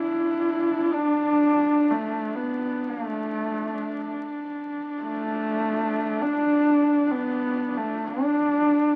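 Mongolian folk in a proud, galloping mood, this 9-second excerpt sets a dark, nasal horsehead fiddle melody, up front with vibrato and portamento, over a quieter, rich and earthy horsehead fiddle drone on D4, both heard through a wet club reverb and the crackle of a very old 78 rpm record.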